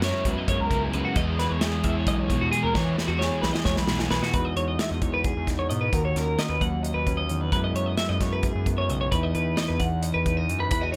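Wistful yet bright, this short math rock and midwest emo excerpt moves at a brisk 263 BPM counted in eighths, in a straight 7/8 that gives it a restless, asymmetrical lilt in E lydian. A clean, twangy twelve-string electric guitar sits up front with chiming arpeggios, while a dark, fingered electric guitar supplies softer accompaniment beneath it. A double-tracked overdriven guitar adds a crunchy riff through the opening 4.3 seconds, and a gritty, aggressive synth bass built from square and sawtooth waves with oscillator sync growls underneath with distortion. A punchy acoustic drum kit with a medium-tuned snare, kick and hi-hat drives the pulse, throwing in a fill from 2.7 to 4.3 seconds before the music shifts into a new section. The harmony drifts through lush chords such as F#9sus4, Emaj9 and Bmaj9/D#, all set in a light reverb.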